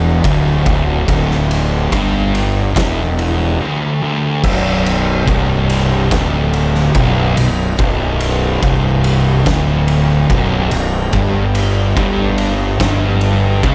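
Hypnotic and heavy, this stoner and doom metal passage crawls at 72 BPM in B minor, with two dark, fuzz-drenched guitars grinding out the riff in the background. A growly, overdriven fingered bass and a gritty, saturated oversized low-tuned drum kit with a fat snare, punchy kick and dark cymbals sit up front in a bright stone room under light reverb. The riff moves from Dsus24 to Bm at 4.4 seconds, and at 11.1 seconds a third double-tracked fuzz guitar joins as the harmony drops away.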